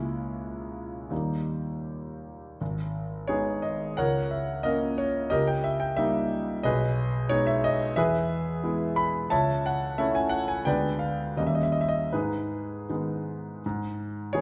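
A warm concert grand piano carries this brief romantic character piece alone, sitting up front with an intimate, natural tone, a deep bass reaching down to G#1, and the mechanical sounds of its action audible. The mood is passionate and brooding, and the playing moves in a supple rubato over a two-beat metre. A short, unsettled opening ends at 2.6 s, where the music settles onto the home minor chord and begins a longer passage that wanders through a range of harmonies, including a diminished seventh before a dominant seventh pulls it back home. The harmony then breaks off at 13.6 s, and the piano's sound ends at 14.4 s, since this fragment is cut from a longer work. A resonant recital-hall reverb surrounds the instrument, adding a soft, mellow glow to its close-up presence.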